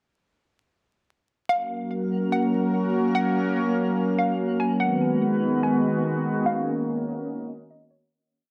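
In a half-time 4/4 feel, this spacious, ethereal piece of atmospheric cloud-rap opens its breakdown at 1.5 seconds with a bright, detuned sawtooth pad sustaining F#maj7, G#m7 and D#m7 chords up front, while a hollow, bouncy square-wave pluck loops a sparse, mellow melody through chorus and tape echo. A twinkling granular texture with an octave-up shimmer joins in the background at 2.0 seconds. A filter sweep runs across the section, which fades out from 6.5 seconds, all within a dark production of vinyl crackle, low-pass filtering and spring reverb.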